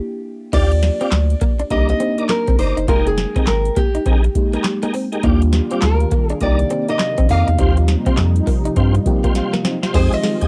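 New jack swing R&B with a punchy, bouncy feel and a swung sixteenth-note lilt, cut from a longer piece and carrying the softness of a home cassette recording. A fingerpicked nylon-string guitar with fresh strings carries the melody with tape echo. A mellow FM electric piano with chorus and phaser lays down soft, full-bodied chords, and together the two open the track with a short break before the band arrives at 0.5 seconds. From there a booming analog drum machine sits up front, with a deep kick, tonal snare, metallic hats, handclaps, tambourine and crash, alongside a round, dark analog bass that is the loudest part. A compressed, direct-recorded clean electric guitar picks a riff through lush chorus, while a smooth tonewheel organ adds stabs through a fast rotary speaker, and a detuned sawtooth pad enters at 5.2 seconds with sustained chords. The room sound is dry, the harmony moves through rich jazz-tinged minor and major ninth chords, and an electric piano fill and a drum fill close out the phrase just before 9.9 seconds.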